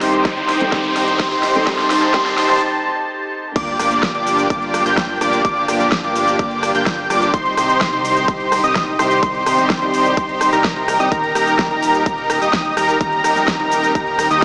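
Festival progressive house in a powerful, euphoric mood, this excerpt opens on a build-up where a soft, felt-muted upright piano with audible action noise, dark floating strings, a bold detuned unison lead arpeggiating high above, a huge filtered supersaw riff, a fat analog bass, an overdriven dance kit with a huge snare and metallic hats, and a riser all surge toward a brief break, then the piano drops out at 3.6 seconds as an impact hits and the punchy overdriven kick drives the pumping drop through lush hall reverb over a Gm7, Cm and Eb progression.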